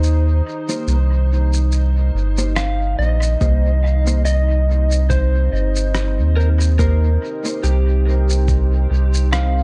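This ambient dub excerpt sits in C minor at a slow 71 BPM in 4/4, with a light swing on the sixteenths and a deep, hazy mood resting on a Cm7 chord. A round, soft sub bass sits up front from the start, while a moody, detuned pad holds sustained chords beneath it, its slow attack and long release blurred by chorus and its own reverb. A dark, slightly broken-up slide guitar carries the melody through dub echo. A clean, fingered electric guitar adds stabs with analog chorus and echo from 0.7 to 7.7 seconds. A sampler-style shaker and rim click, pitched down, muffled and overdriven, tick along through echo and studio reverb. A thumpy, compressed kick enters in the background at 3.4 seconds as the second section begins. The mix is dry overall, and the echoes on the guitars and percussion give the space its dub character.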